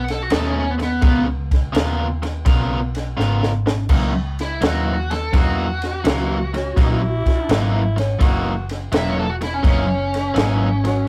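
Electric blues shuffle with a laid-back, rollicking swing, where a smooth, bright overdriven lead guitar carries the melody up front over a cranked stack guitar riff, a round, foam-muted vintage fingered bass and a compact cocktail kit with a punchy kick, high-tuned snare and dark cymbals that plays a fill at 3.2 seconds, before a raspy, growling tenor saxophone enters at 6.6 seconds with scooped, breathy jazz phrasing, all in a rough rehearsal-room recording with small-room reverb and warm saturation, cut from a longer piece.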